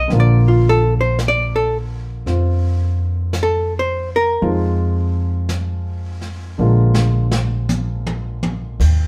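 Recorded as a band playing live in one room with moderate studio reverb, this romantic, late-night jazz ballad in Bb major drifts at a slow, swung 56 BPM: a clean, dark, hollow-body archtop guitar sits up front carrying the melody until 4.5 seconds, a warm baby grand piano accompanies beneath it, a woody pizzicato upright bass anchors the low end, and a smooth brushed drum kit with a boomy kick plays a fill from 6.6 to 8.8 seconds.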